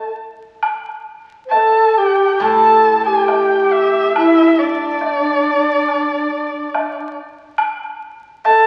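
A dark, woody erhu and a breathy, reedy low xiao open together at 0.0 seconds in this graceful, wistful fragment of Chinese traditional chamber music, cut from a longer piece. The bowed erhu carries the melody with vibrato and portamento, while the bamboo xiao plays a tongued second line beneath it with its own vibrato. Both sit up front yet sound distant. A bright woodblock enters at 0.6 seconds, marking a rubato pulse around 64-71 BPM in 4/4. At 2.4 seconds a steel-string zither, played with fingerpicks, adds a brief accompaniment of ringing, silvery low A notes before dropping out at 5.0 seconds. The whole sounds like a very old 78 rpm record, with vinyl crackle and a wet recital hall reverb that lends a hazy, faraway quality.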